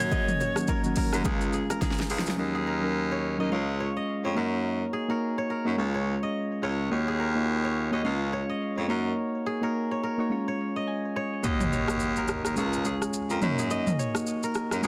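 An afrobeats excerpt with a sunny, breezy swing, where soft, round electric-piano-like synth keys with chorus and a crisp, ringing fingerpicked kora with delay ride over a clear baritone saxophone bass line, as a bright alto saxophone with vibrato flashes a single note in the opening second alongside very quiet congas and bongos, while a punchy, overdriven deep house drum kit with metallic hats plays through a fill from 1.8 to 2.4 seconds, drops out, then returns at 11.4 seconds with its kick muted beneath an electronic impact.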